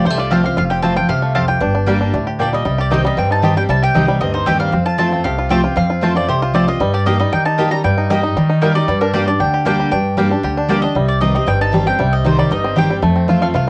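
Captured on home cassette in a moderately ambient booth, this driving, lonesome bluegrass excerpt runs at 231 BPM, with an up-front, woody mandolin carrying the melody, a bright, full-bodied jumbo acoustic guitar picking the accompaniment, a twangy banjo playing fingerpicked arpeggios, a thumpy pizzicato upright bass entering at 0.1 s, and a second mandolin adding double-string stabs from 0.3 s to 10.8 s, the mandolins, guitar and banjo each bearing a cassette-tape grain.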